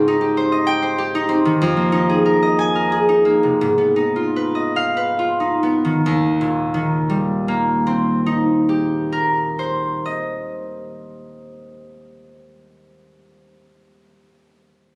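This classical solo harp excerpt is graceful and dreamy: a lone concert harp, fingerpicked, warm and ringing, sits up front and spans Eb2 to Ab5 in Eb major, in a rubato 3/4 that moves between 66 and 99 BPM and slows from 0.7 to 6.1 seconds. The harmony drifts through Abmaj7, Fm11 and Abm6 before settling on Eb6 at 6.1 seconds, where a new section begins. A moderate stone-room reverb gives the acoustic instrument a gentle halo.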